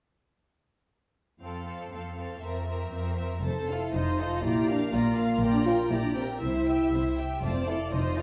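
Cheerful and spirited, this quick classical-period movement for symphony orchestra moves at 120 BPM in a straight 2/4 in F major, and it is cut from a longer piece. Strings begin together at 1.4 seconds: a rich violin section carries the melody high between Eb5 and Bb5, a second violin section adds a warm, close line beneath it, the viola section fills in smooth accompaniment, and a clear, focused cello section holds the bass. At 3.4 seconds a mellow French horn section joins with sustained chords, while a clear double bass section doubles the foundation an octave below the cellos. The violins and violas share a smooth, even vibrato, the cellos and basses play with a focused vibrato, and the horns carry only a light vibrato. The harmony moves from F through F7 to Bb, Gm/Bb and C before settling back on F at 7.4 seconds, and a wet recital-hall reverb places the orchestra further back in the room.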